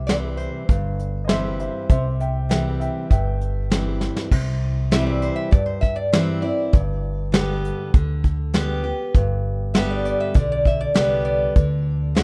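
This nostalgic, sunny slice of honky-tonk and classic country opens straight away with a lap resonator guitar carrying the melody, its fingerpicked slide tone metallic and nasal, over a full-bodied jumbo steel-string acoustic guitar picking the accompaniment up front and a woody pizzicato upright bass. A soft brush drum kit joins almost at once, sitting forward in the mix with a tight kick, a medium-tuned snare, hi-hat and crash cymbal in a straight 4/4 feel. From 1.2 to 4.1 seconds a warm upright piano adds a quiet second line with a natural, long-sustaining tone. A short drum fill then leads into a steel-bar resonator solo beginning at 4.3 seconds, as the harmony moves from C to G before the chords drop out near the end. The small-room ambience and rough home-demo mix give this excerpt, cut from a longer piece, an intimate, homespun character.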